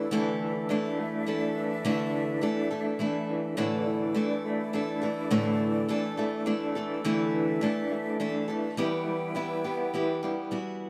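In a straight three-beat metre, this melancholic, reflective acoustic folk excerpt pairs an up-front picked steel-string acoustic guitar, with audible finger squeak, against a dark, slightly broken-up electric guitar playing tremolo-laden arpeggios through a small old amp, while a breathy, unsteady small flute group with vibrato and lifted highs holds sustained chords over a Dsus2, Asus4 and Em progression in a wet, modest room.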